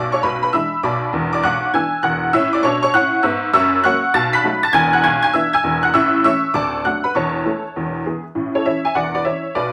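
A detuned, jangly honky-tonk upright piano plays solo and up front in this short, swinging, playful stride jazz passage at 199 BPM in A major, its bright, vintage sound ringing in a small room for just under ten seconds.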